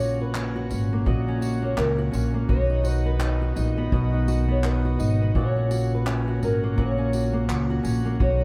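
A fingerpicked flamenco guitar carries the melody with audible finger squeak, set over a full-bodied dreadnought steel-string guitar, also fingerpicked and up front, in this easy-going, heartfelt acoustic pop excerpt at 84 BPM with a swung sixteenth feel, moving from F# to B and back to F#. A woody, thumpy pizzicato upright bass with gut strings sits close in the mix, while a gritty, overdriven tonewheel organ hums sustained chords in the background through a slow rotary speaker. From 0.3 seconds an airy, polished unplugged kit played with bundle sticks adds handclaps, tambourine and a tight kick, all heard from further back in a room with light reverb.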